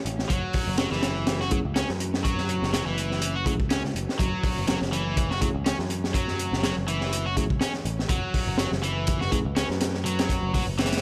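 Breakbeat in the classic breaks mould, this gritty, funky excerpt moves at 123 BPM in 4/4 with a light swing on the sixteenths, sitting in F# minor over a single F#m7 chord. A crunchy acoustic breakbeat kit of kick, snare and hi-hat drives things up front from 0.1 seconds, its punchy kick and high-tuned snare saturated and dark with a rolled-off top. A round, picked electric bass holds down the low end alongside it, while a cranked stack guitar enters at 0.3 seconds with a bright, overdriven riff thickened by tube saturation, sampler grit and delay. Beneath them, a warbling, nostalgic tape-like pad sustains detuned sawtooth and triangle chords with a slow attack, coloured by chorus, phaser, reverb, lo-fi sampler grit and sidechain pumping. A mellow tine electric piano adds clean, delayed stabs in the background from 1.5 to 9.4 seconds, and the whole piece sits in a small room ambience.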